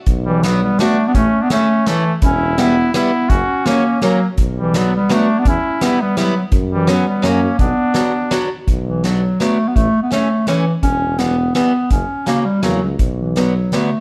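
A brisk 3/4 waltz pulse at 167 BPM in B minor drives this jolly, festive alpine dance-band excerpt, where a soft-mallet drum kit with a punchy kick and roomy sound sits up front, a tuba with light vibrato anchors the bass, a boxy picked archtop guitar with audible finger squeak fills out the accompaniment, a mellow, soft-attack clarinet carries the melody up front, and a clear trumpet adds a second line until it drops out at 8.5 seconds, all in light reverb.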